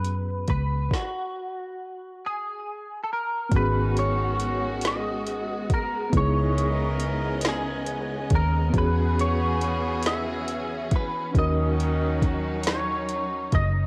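Late-night and sultry, this slow 6/8 R&B groove at 46 BPM sets a twangy, compressed clean electric guitar melody over a reedy electric piano with fast tremolo, a dark, round, foam-muted fingered bass and a soft-kicked electronic drum kit with woody snare and metallic hats, all breaking into a stop at 0.9 s before lush bowed strings and distant, roomy horn stabs join at 3.5 s over chords moving from G#m7 through C#m9 and E69 to D#m7, the guitar, piano, drums, strings and horns carrying a hazy cassette-tape tint within light digital ambience.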